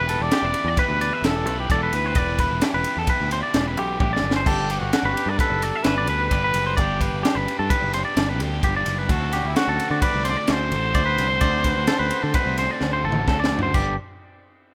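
In a straight 5/4 at 130 BPM, this bright, playful math rock and Midwest emo piece in G major moves through Em7, Gmaj7 and D7 before landing on G. A vintage-toned trumpet with vibrato carries the melody over clean, compressed, twangy guitar arpeggios, while a double-tracked overdriven guitar riff sits in the background and a warm picked bass anchors the low end. Up front, a gritty, punchy acoustic fusion kit with a high-tuned snare and pumping small-room sound drives the groove, with drum fills at 4.0 and 12.8 seconds, all in a reverberant, rough home-demo mix cut from a longer piece.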